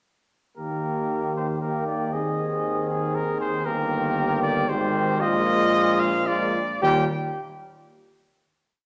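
Bathed in a wet recital-hall reverb, this brief and noble classical brass quintet piece in an uneven 3/4 puts a warm trumpet melody with light vibrato up front, over a second trumpet and a soft-attacked French horn of mellow tone, a distant, brilliant trombone in the background and a roomy tuba holding sustained bass, before the quintet settles on a final chord at 6.8 s.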